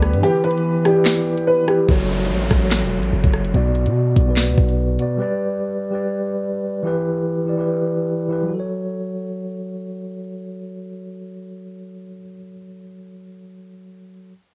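Opening at once, a dark, boxy baby grand piano with audible action noise and cassette-tape wear plays a brief melody over a hollow, flute-like pad with chorus, a clean tine electric piano up front, a deep, long-decaying 808-style sine bass, and a knocking electronic drill kit of kick, sharp snare, rim click, crisp hi-hat and handclaps, its kick muted from 0.2 to 1.9 seconds. This menacing drill excerpt in F# phrygian at 145 BPM moves in a half-time feel: the piano and pad stop as an electronic downlifter enters at 1.9 seconds, the bass and drums stop by about 5 seconds, and the electric piano then carries on alone to 14.3 seconds. The chords move from Em through F#m, Bm and G, set in light digital ambience with the intimate character of a home cassette recording.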